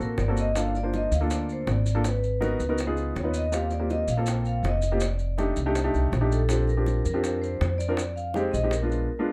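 A straight 4/4 Afro-Cuban jazz groove with a danceable, sophisticated air, this brief cut from a longer piece sets round, low-tuned bongos in the background from 0.2 s and grainy, band-limited maracas beneath a thumpy, woody pizzicato upright bass up front, while an up-front upright piano with short sustain accompanies through rich extended chords and a ringing, airy vibraphone, its motor off, carries the melody through plate reverb in a dark, lightly reverberant production.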